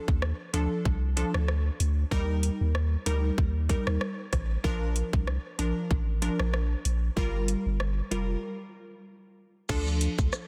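Dancehall at 95 BPM in D phrygian, tough and bouncy, with a lightly swung 16th feel moving through Dm, Eb, Bb and Gm7 before a break at 8.4 seconds. A glassy, detuned wavetable pluck with chorus and a filter sweep carries the accompaniment up front, while a deep, punchy sine sub bass with a pitch-drop attack holds sustained low notes beneath it. An electronic island pop drum kit with a tight kick, metallic hats, rim click, shaker and crash sits close and tape-warm in a light reverb, all under a dense, heavily limited modern master.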